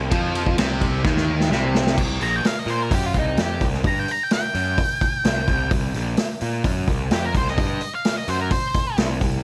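Heavy and brooding, this short cut from a longer blues rock and southern rock power-trio piece moves in a straight, steady 4/4. It opens on a C minor chord with a double-tracked, cranked stack guitar riff that sounds bright and overdriven, with a phaser coloring its tone. Underneath, a picked electric bass sits up front with a growly, overdriven edge throughout. The acoustic drum kit drives the track with a tight kick, a medium-tuned snare, hi-hat, ride and crash, sounding gritty and saturated with dark cymbals and a rolled-off top, and it plays a fill from 1.1 to 2.0 seconds. At 2.0 seconds the harmony settles onto a C5 power chord, the riff guitar stops, and from 2.2 seconds a dark, distorted octave-fuzz lead guitar takes a picked solo in a high register. Light reverb surrounds the trio.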